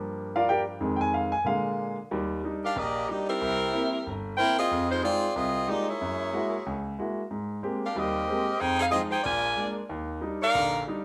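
Jazz at a brisk 185 BPM in 4/4, this short passage from a longer piece swings its eighth notes with a brassy, energetic drive in Eb major. A clear grand piano opens alone, playing accompaniment across a broad range from low G1 up to Ab5 and sitting up front with a natural tone. At 2.6 seconds a bright saxophone section enters with the melody, its ensemble vibrato giving the line a classic big-band character as it moves between G3 and Ab5, also placed prominently up front. The harmony travels from Gm7, Fm7 and Bb7 into Ebmaj7, then colors the phrase with C7, Gb9 and Abmaj9 before a Fm7 to Bb7 turnaround lands back on Ebmaj7 near 9.9 seconds. A moderate large-studio reverb, around one second long, gives the parts a roomy, lively space.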